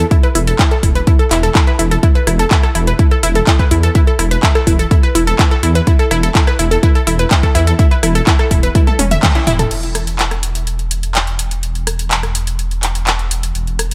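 Soaked in light reverb and a digital ambience, this emotional, expansive progressive house excerpt sets a lush, detuned unison pluck playing filter-swept arpeggios over a dark, rumbling saw bass, both pumping against a punchy, up-front electronic kick. A pop drum kit with metallic hats, handclaps, rim clicks, toms and crash cymbal fills out the groove, with a drum fill from 8.8 seconds and a band accent at 9.2 seconds. The kick stops at 9.3 seconds and the pluck shortly after, leaving the saturated bass and the kit to carry the chordless closing stretch.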